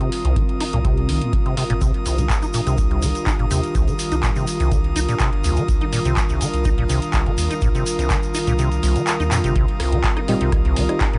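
A straight 4/4 acid house groove at 124 BPM in C minor, raw and hypnotic, cut from a longer piece, pairs a dry, deep electronic kick and an electro analog drum machine's handclaps, metallic hats and rim click with a grainy tube shaker from 1.8 to 9.5 seconds, while a rubbery, resonant acid bass riff with tube saturation and analog delay rides over a thick, saturated sub bass, a warbling, nostalgic tape-like pad and an airy, breathy pad pumping alongside them on a steady Cm, until the kick drops out at 8.6 seconds, a drum fill arrives, and a drop brings a soft, vintage chord stab in the background, all in a dry, gritty hardware recording with little reverb.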